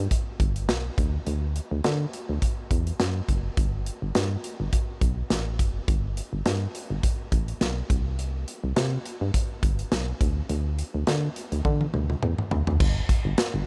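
A round, punchy FM bass opens this romantic, nostalgic 1980s-style pop excerpt at 104 BPM with a light 16th-note swing, joined almost at once by an up-front, small-room acoustic drum kit of punchy kick, snare, hi-hat, tambourine, toms and crash that plays a fill from 11.7 to 12.8 seconds, all under light reverb.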